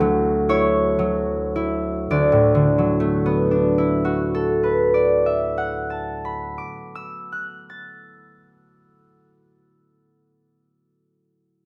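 A close, detailed recording places the concert harp up front in a moderate recital hall reverb, its ringing, fingerpicked strings carrying a warm, acoustic glow. This is a peaceful, serene solo classical harp piece in D major, moving in a slow, rubato 6/8 at around 39 dotted-quarter beats per minute. The harp plays throughout this brief passage cut from a longer piece, spanning a broad range from D2 up to A6. The opening slows down over its first 2.1 seconds, resting on a Dmaj9 harmony. At 2.1 seconds the music moves into a new section built on a D69 chord, continuing the calm, unhurried mood until the harp's part ends at 9.7 seconds.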